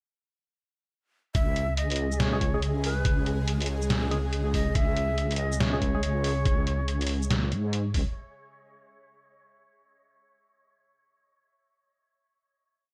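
Deep dubstep in C# minor at 141 BPM with a swung, half-time 4/4 feel, heavy and dark, opening straight into a drop at 1.3 seconds where an airy, bamboo-toned shakuhachi with chiff and vibrato plays call-phrase motifs through dub echo over long, wobbling dark bass notes from a deep, up-front sawtooth-and-sine bass thickened by chorus and tube saturation. A gritty, pitched-down, sampler-style kick and a trip hop kit of closed and half-open hats, shaker and a medium-tuned snare drive the half-time beat. In the background, sparse, hollow organ stabs move one chord shape in parallel through chorus and dub echo, a nasal, string-like drone holds a tense, evolving pad, and a grainy, flickering texture sustains a high G#4, all set in light digital ambience.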